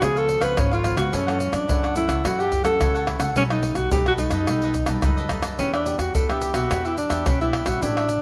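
A joyful, sunny samba and choro groove opens at once with an alto saxophone carrying the melody over a bed of cavaquinho, nylon-string guitar, upright bass and a percussion group of egg shaker, surdo, pandeiro and tamborim. The saxophone sits up front in a jazz-style solo, its warm subtone shaded with vibrato, scooped notes, a smooth top and a touch of tape echo. Behind it the cavaquinho is bright and crisply picked, while the classical nylon-string guitar stays in the background, fingerpicked, with an audible finger squeak. The pizzicato upright bass sounds woody, and the percussion is close, dry and up front around a tight surdo. Moving through C#7b9, F#m7, B7b13 and Em7, this brief passage of about 8.2 seconds, cut from a longer piece, is framed by a moderate echo-chamber reverb that gives it a studio sheen.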